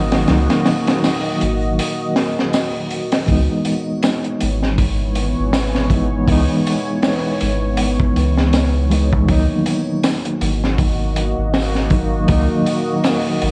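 A reedy electric piano, a dark ambient pad and a soft, round dub sub bass open this brooding, smoky trip hop excerpt together, joined almost at once by a crunchy breakbeat kit with swung sixteenths. The electric piano carries the accompaniment with a mellow, clean tone, quick tremolo and tape echo, as if heard through its own built-in speakers. Alongside it, the detuned sawtooth pad holds moody sustained chords with slow attacks, long releases, chorus and its own reverb. The drums sit up front with a gritty, saturated character from vintage 12-bit sampler grit, a high-tuned snare and a tight kick, while triangle and tambourine stay faint in the background. A brief break arrives at 1.8 seconds, the harmony shifts at 3.3 seconds, and the opening chord returns at 9.3 seconds. A worn, warbling cassette quality with vinyl crackle, pitch drift and small-room ambience colours the whole mix.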